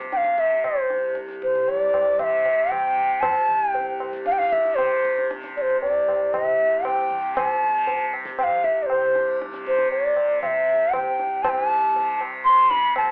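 Devotional and radiant, this excerpt of Hindustani classical music in raga bilaval on C moves at about 116 BPM in a straight 4/4 and gathers speed throughout. A softly plucked, buzzing tanpura drone shimmers low beneath an airy bamboo bansuri, which sits close and up front with vibrato and tongued notes, while a high-tuned tabla with a short ring sounds from a small room. The whole recording has a narrow telephone-like tone and a moderate studio reverb.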